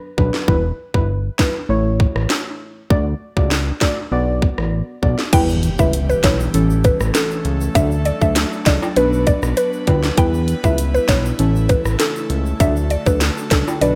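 Tough and sultry, this straight-feel dancehall clip opens on deep, dark chord stabs with chorus, joined almost at once by a fat, saturated analog bass and a tight, up-front island pop drum kit with sharp snare, rim click and crash, before a woody, nasal mallet-like synth pluck with chorus and digital delay, an airy, breathy pad pumping under sidechain, soft-handed shaker and ringing timbales in the background and a very quiet electronic impact arrive around 5.3 seconds, all over a cycling Em–A–D–Bm progression in light reverb.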